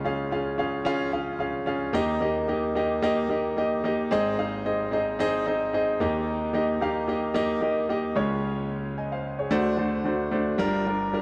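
Romantic and uplifting, this short pop excerpt features a solo concert grand piano at 111 BPM in 4/4, with a light swing on the sixteenths. The piano sounds clear and natural, sitting up front with a deep bass, and ranges from G1 up to Ab5 across its 11.2 seconds. Set in Eb mixolydian, the harmony moves from Db through Eb and Ab, returns to Eb and Db, then turns to D7 before landing on Gm7 at 10.6 seconds. A moderate plate reverb with a long 3.3-second tail gives the instrument an airy, spacious glow. Cut from a longer piece, the passage feels like an open, hopeful statement.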